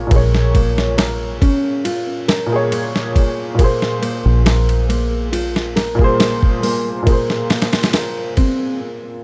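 A dark, round fingered electric bass sits up front in this brooding, cinematic trip hop excerpt, its foam-muted tone holding a deep Bb beneath a slow 69 BPM in straight 4/4. Beside it, a compressed, sampler-style soul drum kit brings a thumpy kick, medium-tuned snare, hi-hat and ride, all with a gritty, tape-colored character. A worn, woody upright piano with a slightly detuned edge carries the accompaniment through tremolo, vintage 12-bit sampler grit and tape echo. A thumb-plucked classical nylon-string guitar weaves arpeggios through the texture, also treated with tape echo. The harmony moves from Bbm7 to Ab/Bb at 3.6 seconds in a dry, close-sounding space, and after the other parts stop by 8.8 seconds the piano rings on alone through a short break to 9.2 seconds.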